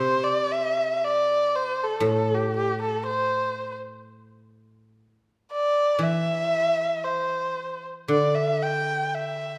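A close, expressive bowed erhu carries the tender, graceful melody with vibrato and portamento, singing between G4 and G5. A ringing, silvery guzheng played with fingerpicks accompanies it in the low register, both parts up front and sounding throughout the 9.6 seconds. This Chinese traditional chamber passage, cut from a longer piece, moves in a rubato 2/4 at 59 BPM in the A yu mode, set in a moderate recital-hall reverb.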